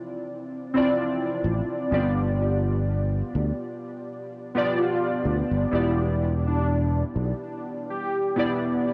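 Vaporwave at a slow 63 BPM in 4/4 with a light 16th-note swing, this melancholic, woozy fragment of a longer piece drifts over Dm9, G7 and Em7 through a cassette-tape haze with light reverb. Warbly, detuned lo-fi synth keys carry the chords from the start with analog chorus and tape echo, and a growly, punchy fretless electric bass enters at 1.4 s with tube saturation. A velvety synth lead with vibrato arrives at 4.8 s, sitting lower in the mix with its own chorus and tape echo.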